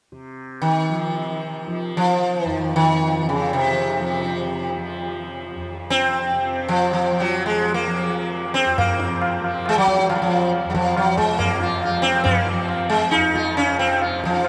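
A bright, softly plucked tanpura drone opens at 0.1 seconds, buzzing and shimmering low beneath what follows in this Hindustani classical passage in raga bhairavi on F, cut from a longer performance. At 0.6 seconds the sitar enters up front with the melody, its plectrum-plucked tone rich with buzz and the glimmer of sympathetic strings. The music unfolds in free time, carrying a longing, solemn mood. At 8.8 seconds a low-tuned, ringing tabla joins in, sitting a little back in the mix with the close feel of a small room. The whole piece is bathed in a huge, wet ambient reverb that gives the sense of a vast, echoing hall.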